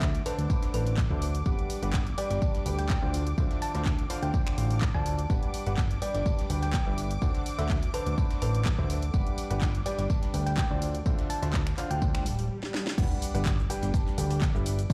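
Fairly dry yet big, as if played through a large sound system in a bare room, this uplifting, joyful piano house cut moves at 125 BPM in G major, led by a bright, woody upright piano riff with delay and sidechain pumping over a fat, detuned analog bass, a punchy overdriven electronic kick, and an overdriven house kit of cracking snare, bright hats, handclaps, finger snaps, shaker and crash. In the background sit a silky analog string pad with ensemble chorus and pumping, a round, tine-like synth pluck melody with chorus, cassette-tape warble and delay that plays until 12.5 s, and a gritty, very quiet sampler-style soul kit of hi-hat, snare and tambourine. An electronic swell and sub drop arrives at 12.2 s, passing through a brief stop and drum fill into the drop at 13.0 s on Gmaj7.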